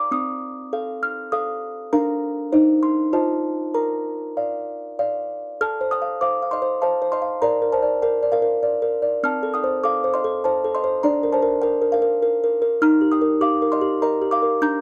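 A solo music box opens the recording, its delicate, tinkling tone sitting up front in a dreamy, innocent classical lullaby set in a gentle waltz-like triple metre with a straight feel. The plucked notes of this large box have a mellow, soft character, spanning from the middle register up into a high top. The opening phrase moves through F7/C, Bb/D, Cm/Eb and F7 before settling on Bb, giving the first few seconds a simple sense of home. At 5.6 seconds a second passage begins, drifting through F/A, Bb and a shadowy Adim/C before landing on Bb/D and finally Eb. Light reverb and a dark production surround the instrument with a hushed, intimate glow, and the clip is taken from a longer piece.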